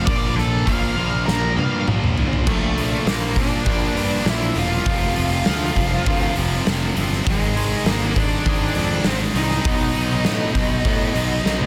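A dark, fuzz-drenched lead guitar with distortion and digital delay carries the melody over an oversized, low-tuned acoustic drum kit that sits up front with a boomy kick, dark cymbals and a gritty, pumping big-room sound, opening in half time with a lead guitar solo and a drum fill before the full groove lands at 2.5 seconds. This bittersweet, restless stretch of quiet-loud alternative rock moves at 100 BPM in a straight 4/4, cut from a longer piece, with a growly, overdriven fuzz bass underpinning a biting overdriven guitar and a heavy high-gain guitar riffing in the background, while a very quiet, double-tracked tight distorted guitar joins at 2.5 seconds. The chords move from Bb5 to Bb, F, G# and B under light reverb in a dense, heavily limited modern master.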